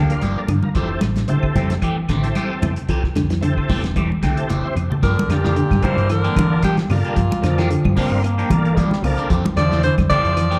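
A hypnotic, funky afrobeat excerpt at 112 BPM in G dorian opens with a smooth tonewheel organ swirling through slow rotary speaker, a clean semi-hollow guitar's background arpeggios with phaser, slightly broken-up guitar stabs with tape echo, a round hollow-body bass, a dark cloth-damped drum kit with a fat snare, bright hard-hand congas and very quiet woody claves, then after a drum fill from 4.0 seconds a clear alto saxophone takes the melody at 5.0 seconds over a buzzy metal-muted trombone, joined briefly by a punchy, tight trombone section from 7.4 seconds, all heard through a live club PA with light room reverb.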